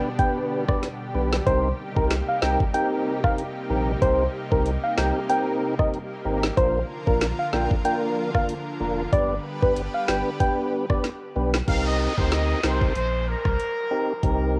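Heard through the soft haze of a home cassette recording with light reverb and digital ambience, this excerpt is a tough, sultry dancehall groove in C minor at 94 BPM, with a gentle swing on the sixteenths. An electronic island pop drum kit sits up front, with a knocking kick, woody snare, metallic hats and rim clicks, and a deep, thick saturated sub bass enters at 1.1 s with a fast attack. A mellow, flute-like tonewheel organ plays clean, percussive accompaniment with key click and vibrato, while a lush, detuned sawtooth pad holds bright chorused chords that pump against the beat. A round, keys-like FM synth lead carries the melody with decaying notes and a gentle shimmer over a progression through G, Cm7, Bb and back to G. The lead drops out at 11.0 s and the pad falls away at 11.7 s, when a tight, jazz-style horn section steps forward with tape echo as an electronic downlifter sweeps beneath it, closing on Cm7.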